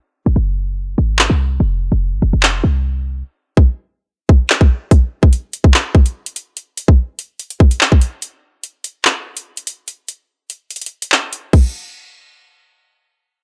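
A dry, gritty recording set in a digital ambience frames this menacing, tense drill excerpt, cut from a longer piece and moving with a half-time feel. A short, punchy 808-style bass with a sine body, noise layer and fast attack that quickly decays sits up front from 0.3 to 3.2 seconds, while the electronic drum kit arrives at 1.2 seconds with a hard-clipped kick, metallic hi-hats, handclaps and crash cymbal. The produced, forward drums carry on until 11.6 seconds, and the track shifts into a new section at 11.5 seconds.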